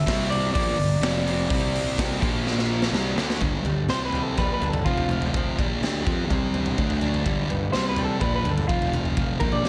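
A thick fuzz guitar riff anchors this restless, bittersweet quiet-loud alternative rock excerpt at 125 BPM, driven by a gritty, up-front garage drum kit in a bright stone room and a growly fuzz bass, while a slightly broken-up, lo-fi electric guitar carries the melody with plate reverb and analog delay; a bright, compressed distorted guitar riff and veiled, con sordino strings sit behind until a drum fill at 2.5 seconds leads into a clean electric guitar solo at 3.4 seconds, joined by boxy, swing-style acoustic guitar arpeggios.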